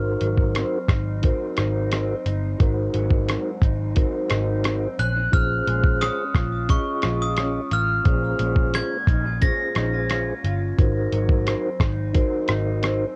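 A hazy home cassette recording with light reverb frames this wistful, lonely fragment of bedroom-leaning indie pop at 88 BPM in a straight 4/4. A dark, slightly broken-up electric guitar through a small old amp sits low in the mix, its lush chorus and warbly pitch drift lending a lo-fi wobble. Up front, a soft, flute-like tonewheel organ spins through a fast rotary speaker. Underneath, a foam-muted, round electric bass and a compressed, sampler-style kit keep things close and muffled, with the drums adding a thumpy kick, hi-hat and rim click from 0.2 seconds. At 5.0 seconds a glockenspiel struck with brass mallets brings a bright, sparkling, bell-like melody, bathed in chorus and tape echo, until it stops at 10.1 seconds. The chords move from Ab7 to Bbm7 and back to Ab7, leaving a solitary air.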